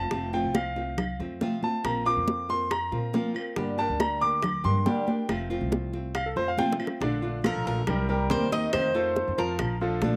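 Sunny and danceable, this Latin piece in the Cuban son and guajira style moves at 139 BPM in a straight 4/4 in Bb major, cut from a longer performance. A brilliant, up-front grand piano carries its arpeggios as a solo through the opening 7.0 seconds, its long sustain and audible action noise giving an intimate feel, while a small, fingerpicked nylon-string guitar adds bright accompaniment, both touched with slapback echo. Beneath them, a dark, thumpy pizzicato upright bass on gut strings anchors the harmony. Close, dry congas played with soft hands ring high, and tight, high-tuned bongos struck with hard hands sit beside them, while woody claves click distantly in the background. A drum fill at 6.6 seconds leads into a second section where the chords shift through Bbmaj7, Cm7 and F7, and at 7.5 seconds a picked Cuban tres steps up front with a metallic, double-strung melody, some strings doubled at the octave. 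Recorded outdoors with light reverb, the whole has an open, lively sound.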